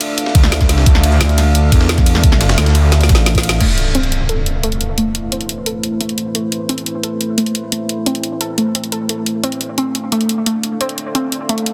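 Dense, heavily limited and set in a moderate, lush hall reverb, this futuristic, aggressive excerpt of dark technical drum and bass at 175 BPM in A minor opens on a drop. An overdriven, knocking electronic kick and a thick detuned saw bass join at 0.3 s and a growling FM bass at 1.2 s, all sitting up front over a drum and bass kit with a woody snare and bright hats, a very quiet gritty breakbeat sampler kit and a deep, moody pad with sidechain pumping. A drum fill from 2.9 s and an electronic impact at 3.6 s then give way to a lo-fi, warbling pluck arpeggio with chorus, digital delay and a filter sweep as the chords move from Dm to Am and Dm7.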